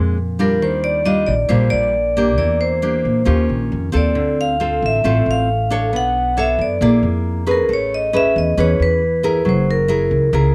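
Close, detailed and nearly dry, this sunny, relaxed bossa nova fragment puts all three players up front, with a fingerpicked nylon-string guitar sounding full-bodied and classical, finger squeak included, over a woody, pizzicato upright bass. From 0.4 s a bright, ringing vibraphone, struck with medium hard mallets and its motor off, carries the melody in a metallic, close-miked tone. The harmony drifts through rich extended chords such as Ebmaj9, Em7b5, Bb7#11 and Amaj9, giving the short passage a gently sophisticated glow.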